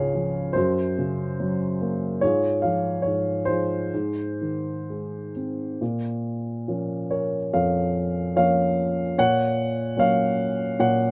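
Classical solo piano in a peaceful, calm mood, this short excerpt from a longer piece features a dark, woody upright piano with long sustain played up front in a lyrical, rubato 4/4 at 61-77 BPM, drifting through Db, Gb and Ab harmonies before settling into Bb minor at 5.8 seconds, captured by close, detailed microphones in a dry room.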